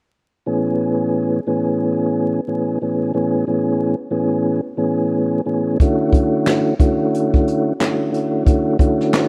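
A mellow, round tonewheel organ opens this nostalgic boom-bap hip-hop excerpt at 0.5 s, its dark, lightly overdriven tone spun through a fast rotary speaker and softened by cassette-tape grit and filtering as it plays over an Amaj9 chord in A major at 90 BPM with a 16th-note swing. At 5.8 s the harmony moves to Dmaj7 and an up-front acoustic jazz kit played with brushes joins, bringing a high-tuned snare, boomy kick, hi-hat and handclaps in a natural studio room. Light reverb and vinyl crackle give the rough home-demo mix a warm, nostalgic feel.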